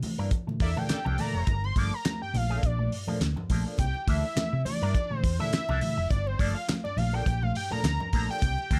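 A fat, detuned sawtooth analog lead with a sub octave, a plucky filter attack and vibrato carries a solo melody from 0.6 seconds through this sly, hypnotic funk excerpt at 104 BPM in G dorian, swung on the sixteenths over chords moving between a rootless C13 and Gm9. Underneath, a cloth-damped, thuddy kit sits up front with a fat snare, tight kick, hi-hat and handclaps, while a dark, round hollow-body bass, clean twangy guitar through an envelope-filter wah, mellow tine electric piano stabs and ringing, saturated congas in the background fill out the groove. A distant, roomy horn section with light vibrato and octave doubling adds a brief second line between 0.6 and 1.6 seconds during an opening band accent, and the whole mix stays dry and close.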